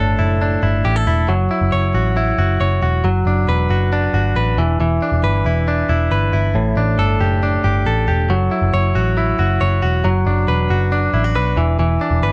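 Restless and bittersweet, this short cut from a longer jangly indie pop piece in straight 4/4 sets a bright, twangy, up-front clean electric guitar playing arpeggios over a round, punchy, foam-muted vintage bass, both running throughout the 12.3 seconds as the chords cycle from A7sus4 through F#m7, Bm7 and Em7 under light reverb and a dark, warm production.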